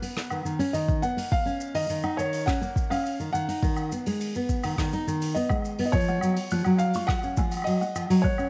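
Light reverb gives this short folktronica piece a delicate, playful glow. At 104 BPM in a straight 4/4 and F# major, a soft, felt-muted upright piano roughened by vintage 12-bit sampler grit carries the mellow, intimate melody, while a dark, thumb-plucked nylon-string guitar sits up front with arpeggios; both parts are colored by tape echo. A vintage brush drum kit of hi-hat, rim click, shaker and woodblock sounds small-roomed with a rolled-off top, and an overdriven electronic kick enters at 0.9 seconds, soft yet up front. The harmony moves through B, D#5 and G#m7 before settling on F#5 at 5.9 seconds, where a new section begins. At 6.1 seconds a woody, hollow-toned kalimba adds a short second line in the background, also carried on tape echo.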